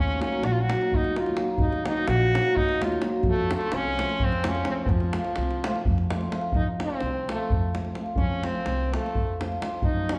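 A nasal, metallic stopped French horn leads this fiery, restless Balkan wedding-band tune in 7/8 at 255 BPM (counted in eighths), sitting up front yet sounding distant in a classical style and taking a solo from 6.5 s. Beneath it, a shimmering hammered cimbalom, a woody pizzicato upright bass and a deep, saturated davul drive the F phrygian dominant harmony from Ebm to F at 3.2 s. The dark production places everything in a reverberant recital hall, and this short cut is taken from a longer piece.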